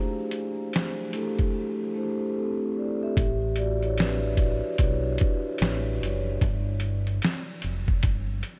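Mellow and nostalgic, this swung lo-fi hip hop fragment at 74 BPM opens on a dark, ringing vibraphone played with soft mallets, filtered and colored by cassette tape, over chords moving from D9sus4 to A9sus4 and G7(no3). A compressed, muffled sampler-style drum kit with a thumpy kick and medium-tuned snare drops out between 1.5 and 3.2 seconds, returning at 3.2 seconds as a round, punchy dub electric bass enters deep in the low register. The dreamy mix is soaked in a huge ambient reverb with a long tail and cassette tape color, keeping the parts up front.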